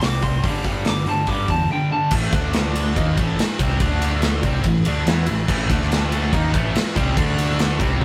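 This anthemic, powerful hard rock clip drives forward in a straight 4/4, anchored by a big acoustic drum kit placed up front with a punchy kick, a medium-tuned snare, toms, hi-hat, and bright crash and ride cymbals ringing in a big room. An amped, overdriven electric bass played with a pick adds a growly low end under three riffing guitars set in the background: a biting overdriven part colored by phaser, and two tight distorted parts, one of them double-tracked. A slightly broken-up, compressed lead guitar opens with a short solo melody that stops at 2.1 seconds, when the music moves into its second section. One of the tight distorted guitars also drops out at 2.1 seconds and returns at 5.5 seconds, while the bass, drums and the other two guitars play throughout. The chords move between G, A and D under light reverb, and the rough rehearsal-room sound carries a faint mains hum in this clip cut from a longer piece.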